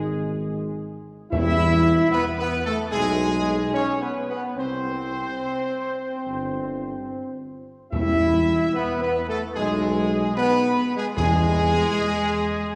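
Heard from further back in a reverberant concert hall, this solemn, majestic classical excerpt in E major moves at a stately 74 BPM in 4/4, with a mellow trumpet section carrying the melody up front with light vibrato. A clear trombone section and a distant, roomy French horn section sustain chords beneath, while a dark, smooth-topped tuba anchors the bass until 11.8 seconds. Articulate timpani struck with hard mallets sit in the background, entering at 1.3 seconds and returning at 7.9 seconds as the harmony moves from E through C5 and back to E.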